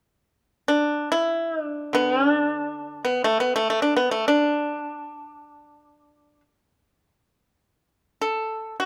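A solo pipa enters at 0.7 seconds, its fingerpicked notes sounding percussive and dry as it sits up front in a close, detailed recording. This short excerpt of Chinese traditional music moves in free time, with a pastoral, flowing mood that lets each phrase unfold at its own pace. The pipa stays between D3 and A4, its acoustic tone carrying a gentle glow, and its tuning sits at A4 = 441 Hz. A light reverb gives the room a touch of air around the instrument. At 7.4 seconds the music turns to a new section, which carries on until the fragment ends at 8.9 seconds.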